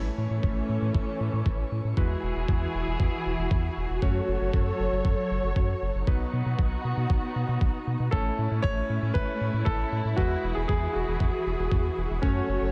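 Muted, veiled strings hold lush bowed chords in shimmer reverb over a round, deep analog bass with tube saturation, while a clear vintage electric grand piano with a clangy low end stabs in the background through delay. A gritty, thumpy kick enters at 0.4 seconds, and at 8.1 seconds an intimate concert grand piano with audible action noise takes up the melody, giving this italo disco excerpt a bittersweet, melodramatic air.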